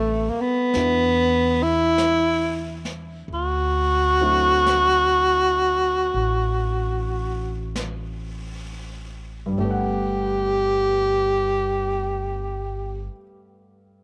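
A breathy, close-miked tenor saxophone opens this tender, romantic jazz ballad up front with vibrato, subtone and scooped notes, over a warm baby grand piano in the background and a woody pizzicato upright bass, with brushed drums joining at 0.7 s, the very slow swung 4/4 feel of 31-50 BPM in G major slowing down through the first 9.6 s as the chords move from Am7 to D7 and settle on Gmaj9 in a small room with light reverb, cut from a longer piece.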